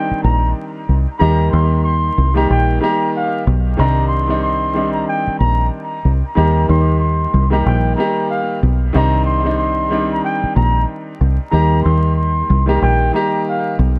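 A swung 16th-note groove at 93 BPM in 4/4 drives this tough, reflective boom-bap hip-hop excerpt, with a round, foam-muted fingered electric bass sitting dark and up front beneath chords that alternate between Cmadd9 and Eb. An intimate grand piano, its action noise audible and its tone colored by cassette tape and dub echo, carries the accompaniment. Above it, a bucket-muted trumpet plays a veiled, breathy, jazz-style solo line with light vibrato and scooped notes, sounding distant and whispered in an echo-heavy, reverberant mix dusted with vinyl crackle.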